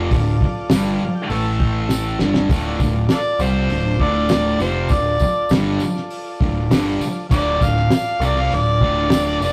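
A straight 4/4 groove at 100 BPM in D minor comes from a cloth-damped, thuddy drum kit with a fat snare, tight kick and dark cymbals, plus a round dub bass and a tambourine jingling in the background, giving this cut from a longer garage rock piece a swaggering, menacing strut. A double-tracked fuzz guitar riff sits up front and bright while a buzzy vintage combo organ holds sustained chords with light vibrato, adding a fill before a drum fill leads into the next section at 2.5 seconds. From 3.1 seconds an overdriven, gritty harmonica takes a punchy solo full of tongue slaps and scooped notes, all within a rough rehearsal-room sound with tube saturation and stone room reverb.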